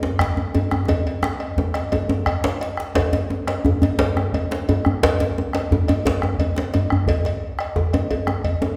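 A deep djembe played with soft hands sits up front in this festive, powerful West African traditional drum ensemble fragment at 116 BPM in 12/8, alongside a tight, cracking second djembe and soon joined by a round bombo and a metallic cowbell, with a drum fill running from 0.9 to 3.0 seconds before the groove shifts into a new section, all set in the lush reverb of a recital hall.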